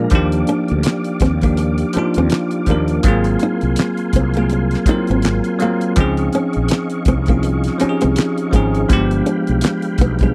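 Relaxed and soulful, this swung neo-soul R&B fragment pairs a bright, bell-like tine electric piano and a round, punchy fretless bass with a cloth-damped drum kit of fat snare, tight kick, hi-hat and handclaps, while a fingerpicked flamenco guitar adds a second line from 0.5 s and a quieter tonewheel organ holds lightly overdriven chords through a slow rotary speaker over lush Ebmaj9, Ab13 and Dbmaj9 harmonies, all caught in a dry, close 1970s-style small-room sound.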